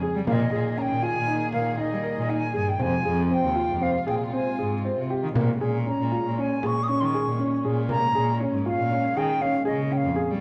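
Flute, muted strings and piano begin together in this pensive, hypnotic stretch of contemporary chamber music in 5/4, cut from a longer piece. The wooden flute carries the melody high and airy, its tongued, expressive line coloured by vibrato and set up front, though with a slightly distant quality. Beneath it the dark grand piano spins mellow, intimate arpeggios with long sustain, a boxy tone and audible action noise. The muted string section holds veiled, con sordino chords with soft attacks in the background, while a rich, nasal cello enters at 0.2 seconds with a smooth, even bowed bass line played by one performer. A small frame drum joins at 0.3 seconds, very quiet and far off, as the harmony moves from Ebsus4/Bb through Fm to Bbm7, all within a moderate recital hall reverb and a dark, warm production.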